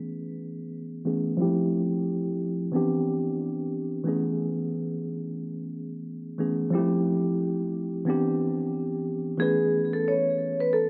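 Swung sixteenths at 90 BPM in 4/4 give this soulful, confident hip hop fragment its easy lean, as a worn, slightly out-of-tune tine electric piano with a cassette-tape character carries lush ninth chords in A major, moving through Amaj9, Fmaj9 and Cmaj9 under a filter sweep until 9.4 s. At that point the harmony settles onto Aadd9 and a metallic, ringing vibraphone played with medium mallets enters up front with the melody, its slow motor vibrato shimmering in a boxy small room. A moderate plate reverb with a long tail lends depth to this brief cut from a longer piece.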